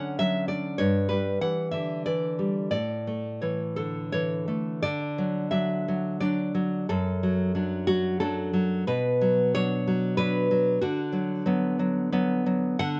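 A nylon-string guitar opens alone on a D major chord, fingerpicked in a classical style and set up front in the sound. This romantic solo piece moves in 3/4 at roughly 85-100 BPM with a rubato feel, so the pulse breathes and stretches rather than holding strict time. The sunny, warm mood comes from the acoustic tone, which spans from F#2 up to F#5. The first phrase passes from D through Em/G to A. At 4.8 s a second phrase returns to D and moves through D/F# to Bm and Bm/D. The guitar was recorded outdoors with a light reverb, and this short section of a longer piece runs 13.0 seconds.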